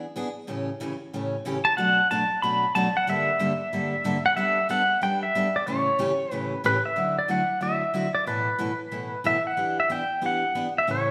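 Country music in a cheerful, playful mood, with a swung eighth-note feel, taken from a longer piece. A picked steel-string acoustic guitar opens alone, its dreadnought body sounding bright and full, with finger squeaks audible as it carries the accompaniment up front. At 1.6 seconds a pedal steel guitar enters with the melody, electric, clean and compressed, played with fingerpicks and slide and shaped by volume swells. Both instruments sit up front, with the steel a touch louder, and the harmony moves through colourful chords such as Bm7, Gmadd9 and Dadd9. A new section arrives at 7.0 seconds, and the pair sound like a band playing live together in a stone room whose reverb lends a wet, lingering tail.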